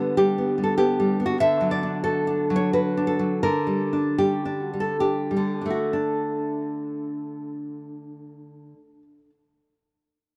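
In a rubato three-beat lilt that slows from 0.5 to 5.9 seconds, this tender romantic fragment of a longer classical piece features an up-front, fingerpicked nylon-string guitar playing alone until 9.3 seconds, its warm tone and audible finger squeaks caught in a dry, close 1970s-style studio recording with light reverb, as the harmony drifts from G over D to D and a darker G minor over D before settling on a bare D chord at 5.9 seconds.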